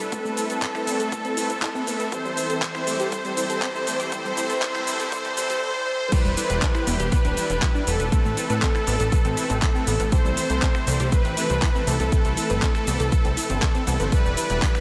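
Drenched in a huge, dreamy reverb with a long tail, this progressive house excerpt feels hazy yet driving, and the pumping sidechain gives its parts a steady breathing motion. A smooth, detuned supersaw carries the melody with delay, joined very quietly by an airy lead with vibrato and portamento playing a second line, while a second supersaw plays low-pass filtered stabs. Beneath them sit lush bowed strings holding sustained chords and a tight, detuned sequenced synth running arpeggios through chorus, phaser, tape coloring and delay. A punchy, layered electronic kick sits up front, alongside a pop kit of metallic hi-hats, shaker, handclaps, finger snaps and crash cymbal. The opening build-up sweeps filters across the arpeggio and supersaw sounds until the drop at 6.1 seconds, where a funky, plucky analog bass with ring-modulated bite enters at 6.2 seconds.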